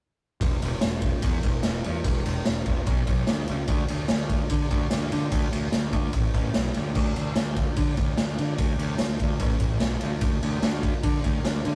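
Raw and rowdy, this short garage rock fragment, cut from a longer piece, pairs a fuzz-soaked picked electric bass with a saturated acoustic drum kit from about 0.4 seconds onward, both sitting up front in a straight 4/4. The bass is overdriven and direct, its warm low end ranging down to E1, while the kit brings a punchy kick, a medium-tuned snare, crash and ride cymbals, all ringing in a bright stone room that pumps around them. The rough rehearsal-room recording carries a moderate booth ambience that keeps the whole performance loose and immediate.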